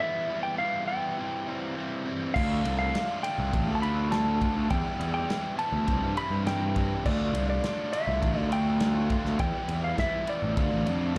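An up-front, fuzz-laden picked electric bass drives this restless, cool indie rock excerpt at 102 BPM in D dorian, arriving at 2.4 seconds alongside a loose drum kit with a rolled-off top, punchy kick, snare, crash and ride. From the opening, a bright, double-tracked distorted guitar picks a riff beneath a clean, compressed, fingered lead guitar whose slapback echo hangs over chords moving through Em, C and Dm. The sound is that of a live gig heard through a club PA, bathed in the venue's reverb.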